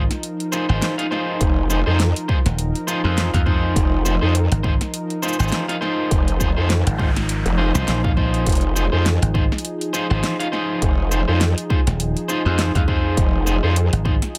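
A mix with light reverb carries this playful, swaggering glitch hop excerpt in F minor at 102 BPM, swung on the sixteenths and resting on an Fm7 chord. A dry, foam-muted thumbed slap bass plays from the start alongside slightly broken-up guitar stabs with vintage 12-bit grit and tape echo and a smooth, detuned analog pad with lush chorus, the guitar and pad both pumping against the sidechain, over a pop kit of fat snare, metallic hats and shaker. At 1.4 seconds a growling, saturated bass with a wobbling formant filter pushes up front, joined by a layered, punchy electronic kick, and a background noise sweep passes briefly from 6.7 seconds.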